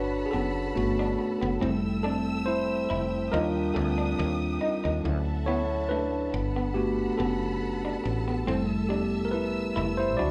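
Recorded as a band playing live in one room with a moderate large-studio reverb, this relaxed neo-soul R&B fragment features a clean, up-front tine electric piano solo through a combo amp over Gmaj9, Fmaj9, Ebmaj9 and Dmaj9 chords, with a lush bowed string section sustaining chords with vibrato and portamento, a woody, growly, round fretless bass, and a picked, slightly broken-up electric guitar adding a second line from 0.3 seconds.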